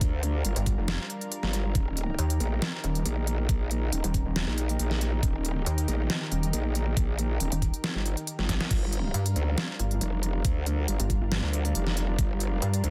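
A half-time 4/4 groove at 138 BPM drives this heavy, aggressive wobble dubstep in G minor, with an overdriven, knocking electronic kick and, sitting up front, a dubstep kit of deep snare, crisp hats and crash cymbal, plus a drum fill at 8.5 seconds. A saturated, formant-filtered growl bass and a detuned, pulsing pluck wobble bass, which enters at 0.6 seconds, both carry chorus and overdrive and sit up front in the low end. Behind them, a lush, warbling sawtooth-and-square unison pad holds sustained chords moving from Gm7 to Eb and back, breathing with sidechain pumping in a dry, dense, heavily limited mix.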